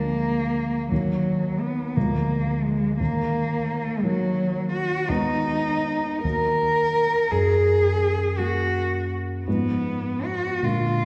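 This romantic classical duo for cello and grand piano unfolds in 6/8 with flexible rubato, its mood yearning and melancholic. The bowed cello carries the melody from start to finish, its rich voice shaped by vibrato, soft attacks and expressive portamento slides between notes. Beneath it, the concert grand piano provides the accompaniment, sounding dark and mellow with a deep bass register. Both instruments sit up front, while a wet concert hall reverb gives the sense of a listener seated further back in the room. The harmony circles through minor chords and a diminished colour, heightening the sorrowful feeling of this passage, which is cut from a longer piece and runs about 11.1 seconds.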